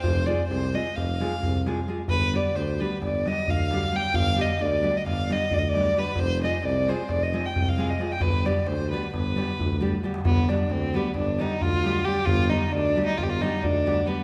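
In a straight 9/8 pulse, this fiery, virtuosic Balkan wedding-band fragment sets an up-front, intimate bowed violin melody with sul tasto vibrato over a mellow, soft-attack tuba bass, a fingerpicked nylon-string guitar with audible finger squeak joining at 0.3 seconds, and a deep, distant clay-shell darbuka played with hard hands that fills at 9.7 seconds, all steeped in the lush reverb of a church or concert hall as Fm and G chords alternate.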